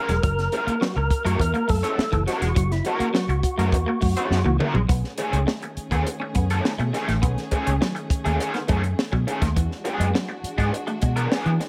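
Light reverb frames a dry, up-front drum kit and a dark, round bass in this short cut from a longer funk piece. At 103 BPM in a straight 4/4, the music struts with a gritty edge over F#9, B13 and E9 chords. A fat, percussive tonewheel organ carries the melody through a slow rotary speaker, chorus vibrato and light overdrive, with audible key click, until it drops out at 4.6 seconds. Beneath it, a raw garage guitar adds overdriven accompaniment through a wah, while a clean electric guitar picks a riff bathed in spring reverb, and the foam-muted fingered bass holds the low end. The compact cocktail kit, with its high-tuned snare and punchy kick, plays a fill from 4.3 seconds that leads into the second section. There, a lush, bowed string section enters at 4.9 seconds with sustained chords set in the background.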